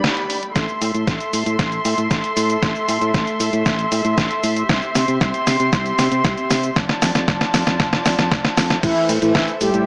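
This nostalgic, danceable italo disco fragment opens on a band accent, with a dark, bowed chamber string section holding intimate sustained chords through vintage 12-bit sampler grit, alongside a detuned 8-bit drum machine whose fat, overdriven snare, hi-hat, cabasa and crash sit up front. At 0.6 s a thumpy overdriven electronic kick and a bright, growly fingered electric bass with analog delay join during a long drum fill, as the chords move from Am through C to F6. At 8.8 s a round, brassy synth brass melody with chorus enters, all heard through a dry hardware recording with vinyl crackle, light reverb and a small-speaker sound.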